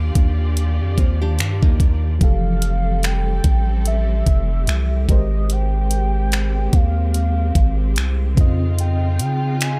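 A warbling FM electric piano with tremolo, phaser and tape echo opens this tender, dreamy contemporary R&B excerpt, over bowed studio strings and a deep, sine-toned 808-style bass held up front. At 0.2 seconds a produced drum kit joins with finger snaps, hi-hat and a knocking kick, and a fingerpicked nylon-string guitar adds brief arpeggios through tape echo from 1.0 to 2.2 seconds. From 2.2 seconds a velvety sawtooth synth lead with chorus and vibrato carries the melody over major-ninth chords, all set in a swung groove and an echo-heavy digital ambience.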